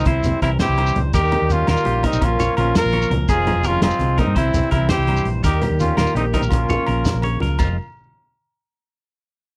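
Highlife guitar band in F minor at 112 BPM in a danceable, bittersweet 12/8, cut from a longer piece, where an up-front trumpet with light vibrato carries the melody over a very quiet second trumpet line, fingerpicked nylon-string guitar with finger squeak, a reedy, breathing pedal harmonium, twangy slapback-echoed electric guitar arpeggios, round hollow-body bass, a punchy vintage drum kit with dark cymbals, very quiet agogo bells and congas, and grainy shekere, all cycling through C, Eb, Bbm and Fm in a dry sound.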